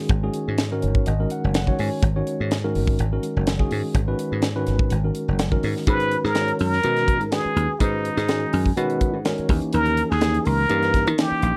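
A forceful, plunger-muted trumpet with wah-wah and vibrato enters at 5.9 seconds to take a brilliant, close-miked jazz solo over this driving, intense electric jazz fusion excerpt in straight 4/4. Beneath it, a warm, clean tine electric piano provides accompaniment through its built-in speakers, adding fills at 0.6 and 8.3 seconds, while a bright, foam-muted thumbed slap bass and a crisp acoustic drum kit, with a high-tuned snare and punchy kick, drive the groove. The dark production keeps the parts up front with little reverb, and the harmony moves from minor-ninth and minor-seventh chords to a tense dominant near the end.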